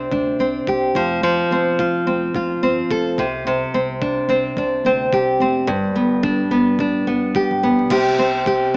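A small-speaker sound and a moderate plate reverb with a 2.1-second tail frame this short, sunny and heartfelt acoustic pop excerpt, tuned to A4 = 438 Hz. At 108 BPM in 4/4 with a light 55% swing on the sixteenths, a full-bodied, deep classical nylon-string guitar sits up front, fingerpicked between G2 and A4 with audible finger squeak. An upright bass, acoustic and played pizzicato on steel strings, stays in the background with a woody, dark, thumpy tone between F1 and D2. From 0.1 s to 8.6 s, a dusty soul sampler-style kit adds crash cymbal and a thumpy kick, its compressed, gritty, tape-warm character kept at natural pitch. The harmony moves from Csus2 to F5, back to Csus2 at 3.2 s, on to G, and lands on C5 at 7.9 s.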